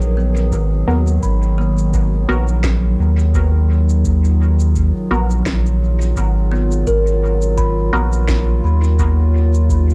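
Ambient dub at 85 BPM in G# dorian, deep and meditative, resting on a single G#m9 chord with a gentle 16th-note swing in this excerpt from a longer piece. A warbling, nostalgic pad sustains dark, detuned chords through chorus and built-in reverb, while a woody, ringing kalimba plays bright arpeggios into dub echo and a round sine sub bass sits up front. Electronic shaker and woody snare carry their own dub echo, a deep analog kick joins in the background at 0.5 s, and from 0.9 to 8.2 s a muted, mellow filtered chord stab comes through phaser, dub echo and a cassette tape effect, all captured as a dry, lo-fi home cassette recording.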